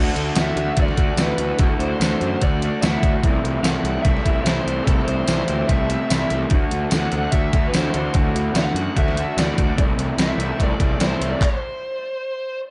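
Dry and dark, this short cut from a longer indie rock piece has a warm sound with its top end rolled off, and it moves at 147 BPM in a straight 4/4 in D mixolydian with a jangly, wistful mood. Two raw garage guitars play the riff together from the start, both picked and overdriven, one sitting very quietly beneath the other, while a growly fuzz bass drives the low end with a bright, amped edge. An up-front, detuned 8-bit drum machine brings a thumpy kick, a medium-tuned snare, hi-hat, handclaps and tambourine, its tape-warm, sampler-style kit re-recorded in a large room. A bluesy lead guitar, dark and distorted, carries the melody over chords that alternate between Dadd9 and Am7/C. At 6.3 seconds the kick and snare drop out, and the band stops at 11.4 seconds, leaving the lead guitar to ring on alone until 12.6 seconds.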